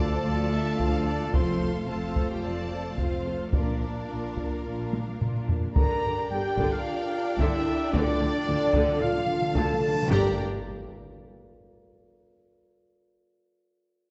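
A straight 4/4 pulse is driven by a taiko ensemble struck with hard sticks in a live room, giving this dark, epic cinematic score its forward push, with a drum fill marking the midpoint. Mellow French horns hold sustained chords beneath clear, close-miked trumpet stabs, while a lush string section adds sustained harmony in the background. A focused, bowed violin section carries the melody with vibrato, set back in the mix, and a second violin line runs alongside it, supported by expressive violas sliding with portamento. Dark cellos and woody double basses anchor the bass. Round, soft-mallet timpani enter at 7.9 seconds with a fill, and a huge, bright reverse cymbal rises at 9.8 seconds into an impact at 10.1 seconds. The whole passage sits in a moderate scoring-stage reverb with a dusky, rolled-off top, and it is cut from a longer piece.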